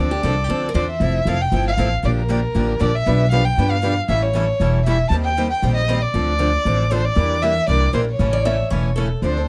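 Heard dry and close-miked, this fiery, virtuosic fragment of acoustic string swing in the jazz manouche style is carried by a single bowed violin, dark-toned and woody with vibrato, sitting up front over a thumpy, gut-strung upright bass played pizzicato. Two picked parlour guitars with a bright, boxy bite fill out the accompaniment, one of them on fresh strings with audible finger squeak. A third guitar in the background adds a brief second line near the start and again from 8.3 seconds, as the harmony moves from minor-ninth colours through seventh chords to a closing A.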